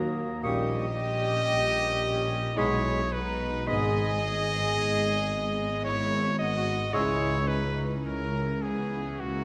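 An up-front, clear trumpet plays stabs from 0.4 s over an elegiac, melancholic classical passage in G# minor, moving in a slow, rubato 3/4 at 55 BPM and cut from a longer piece. Bowed studio violin sections, sul tasto with a soft attack, carry a very quiet melody and a second line, while flute, oboe and a very quiet clarinet add background lines until 7.4 s beside a mellow bassoon, a rich viola section, and sustained chords from a bright trombone section and a distant, dark French horn section. Beneath them, a cello section with light vibrato, a double bass section and a roomy tuba hold the bass in a recital hall reverb as the harmony moves from D#7/A# through G#m to C#m.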